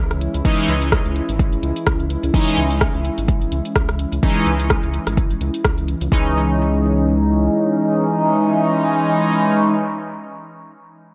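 Heard through a moderate echo chamber, this deep, cavernous dub techno excerpt opens on a C#madd9 chord held by a warbling, nostalgic tape-like pad in the background and a round, dark analog bass that drops out at 7.5 s, while an up-front deep house kit of dark hi-hats and rim clicks and a layered electronic kick both stop by 6.2 s, leaving juicy, resonant polysynth stabs, coloured by filter sweep, phaser, sidechain pumping and dub echo, to carry on with the pad to the end.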